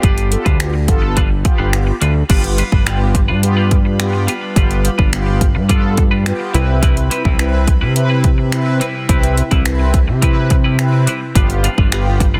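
A straight 4/4 dance-pop groove at 106 BPM drives this upbeat, carefree excerpt, built on a punchy, overdriven pop drum kit with crash, finger snaps, metallic hats and softly clipped snare, a fat, detuned sawtooth analog bass and mellow synth brass both pumping under sidechain, a clean, hollow-bodied semi-hollow electric guitar riff through analog chorus, a clear grand piano touching a single tape-echoed G4 before stopping at 1.7 s, and an airy, breathy pad entering at 2.7 s with very quiet sustained chords over a G7 to Cmaj7 to G7 progression, all in a dense, heavily limited modern master with digital ambience.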